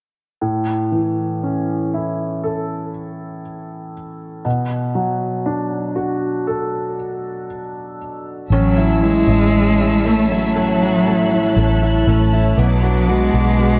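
At a slow 59 BPM in a straight 4/4, this emotional, heartfelt pop excerpt in A major opens on a clear concert grand piano playing accompaniment alone from 0.4 seconds, intimate and up front, with audible action noise, deep bass and long sustain under a lush chorus. The harmony moves between A and Bm7, and at 8.5 seconds the arrangement fills out as bass, guitar and strings enter together. A dark, round, foam-muted vintage electric bass sits up front on the low notes, while a full-bodied jumbo steel-string acoustic guitar picks arpeggios in the background through tape echo. A studio string section holds smooth, even sustained chords high above, and from 8.6 seconds a single close cello carries the melody with expressive vibrato, soft attack and portamento, also touched by tape echo. The whole mix is dreamy and soaked in a long plate reverb, and the passage is cut from a longer piece.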